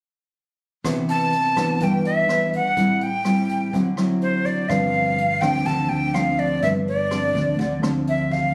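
Captured on a phone in the room with a light studio reverb, this short bossa nova fragment from a longer piece has a breezy, relaxed feel in a straight 4/4. A thumb-plucked, classical nylon-string guitar sits up front, carrying the accompaniment through Cmaj9, Am7 and D9 before settling on G7sus4. A breathy, bright metal flute takes the melody from 1.1 seconds, its crisp attack, chiff and vibrato placing it forward in the sound. A jazz kit played with brushes sits quietly beneath, with a natural studio-room quality, hi-hat, rim click and a boomy kick. At 4.7 seconds the music moves into a new section as a dark, round, punchy fingered electric bass joins low underneath.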